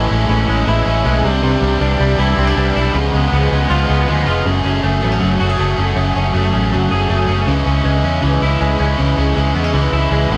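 A punchy, foam-muted electric bass sits up front with a dark, round tone, anchoring this youthful, nostalgic indie pop excerpt from start to finish. Above it, an overdriven garage guitar with a raw, bright edge and spring reverb plays accompaniment, while a clean, direct-recorded guitar spins twangy, scooped arpeggios through an ensemble chorus. Light reverb and a vinyl crackle give the short clip a worn, old-record feel, with the harmony moving from Amaj7 through Cadd9 and C#7 before shifting to F#madd9 at 4.5 seconds and settling on C#m.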